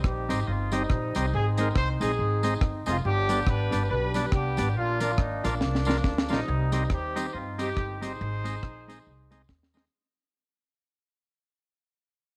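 Ska in C minor at 140 BPM with a swung eighth-note feel, this short cut from a longer piece sounds energetic and mischievous. A clear, tight horn section carries the melody with light vibrato and slapback echo, sitting up front yet with a roomy, distant character. Underneath, a woody, thumpy upright bass played pizzicato and a dry, dark reggae drum kit with a high-tuned snare and tight kick drive the groove, with rim clicks and hi-hat in the mix. From 0.3 seconds a mellow, clean electric guitar adds fingered accompaniment in the background, while a lightly overdriven tonewheel organ with key click and percussive attack punches out stabs, and a jingly, compressed tambourine with slapback echo fills the back of the mix. The harmony moves through Cm, Ab, G and Bb, with a drum fill at 5.6 seconds leading into a new section at 6.5 seconds, where the music begins fading out over light small-room reverb.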